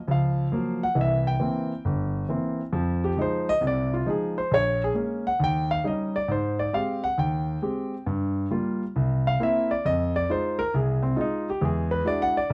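Swinging at 135 BPM in 4/4 with a lilting eighth-note feel, this brief solo jazz excerpt from a longer piece features a concert grand piano alone for its full 12.5 seconds, moving through sophisticated changes from Gbmaj7 through Fm7, Abmaj7 and C7 to a closing E9. The piano sits up front with an intimate, natural character, deep bass, short sustain and audible action noise, spanning G1 to G5. A moderate club reverb and a dark, warm production give the recording a warm, sophisticated mood.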